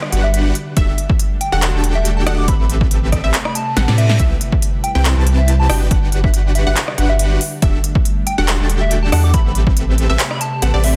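A half-time 4/4 groove at 140 BPM with a light 16th-note swing drives this lush, playful future bass excerpt, where a punchy, overdriven electronic kick (0.8–9.7 s) and a big-room kit of crisp hats, claps, rim clicks and a punchy snare sit over a deep, thick saturated sub bass, while a huge detuned supersaw riff, a catchy, dark square-wave lead with 12-bit grit and delay, a bright background pluck arpeggio and an ethereal chorused pad all pump with sidechain compression through Gmaj7, Em11, Am9 and Cmaj7 chords, with a very quiet reverse cymbal at 3.6–4.2 s and a drum fill at 3.8–4.2 s in a dense, heavily limited mix.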